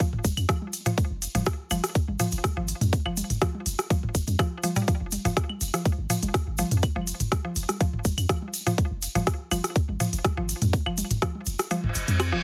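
Minimal techno with a sparse, quirky mood, built on a woody, mallet-like synth pluck riff in chorus and digital delay that pumps against a tight, up-front electronic kick and a deep, punchy sub bass with a pitch-drop attack. A layered techno kit of smooth hi-hats and rim clicks, analog-flavored electronic toms and claves, and a grainy egg shaker set in a distant, large room fill out the groove. The kick stops at 11.3 seconds and a reverse cymbal rises in at 11.9 seconds, all under light reverb and a heavily compressed, radio-like sound.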